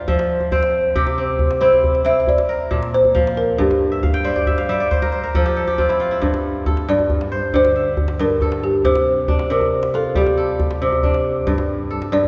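This West African traditional piece for strings and xylophone has a hypnotic, flowing mood, moving at 91 BPM in 12/8 with a straight feel in G dorian. The kora sits up front, its bright, crisp fingerpicked arpeggios ringing across a broad range, and it breaks into a fill from 3.9 to 6.2 seconds. Alongside it, the balafon carries the melody with a woody, round tone from soft rubber mallets, its sound kept dry. The djembe joins almost at once, its tight, cracking strokes from soft hands captured close and set a little lower in the mix. The harmony drifts through chords like C, Bb and Dm11/G, and a second section begins at 6.2 seconds, built on G5 and C5 shapes. A long church reverb surrounds the performance, which is cut from a longer piece.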